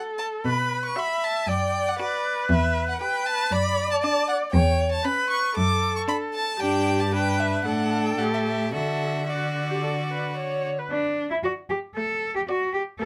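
Two violins and a viola open together, the clear first violin singing a smooth, even melody up front over the bright, airy-bowed second line and the viola's rich, expressive accompaniment with its soft attacks and portamento, before a focused cello enters at 0.4 seconds to anchor a cheerful, spirited classical-period quartet movement that moves with a quick but rubato feel through minor-tinged harmonies toward a settled major close, all set in light reverb and cut from a longer piece.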